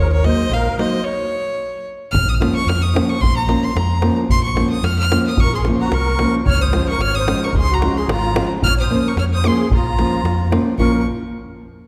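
This Balkan folk piece is played by a Balkan wedding band and cut from a longer performance, bittersweet yet fiery, moving at 111 BPM in a straight 2/4 in Bb minor. A clear, earthy fiddle played by one bowed player carries the melody in a high register, from Db5 to F6, with a light vibrato. A reedy musette accordion, with its shimmering wet tuning, adds a second line, sounding briefly at the start and returning at 5.4 seconds. A round, dark, amped electric bass holds the low end, and a small fingerpicked nylon-string guitar gives acoustic accompaniment. A deep davul sits close and dry in the background. After an opening on Ebm, the band drops out for a stop at 1.1 seconds, then resumes on Bbm and moves through Db, all heard from further back in a wet concert hall.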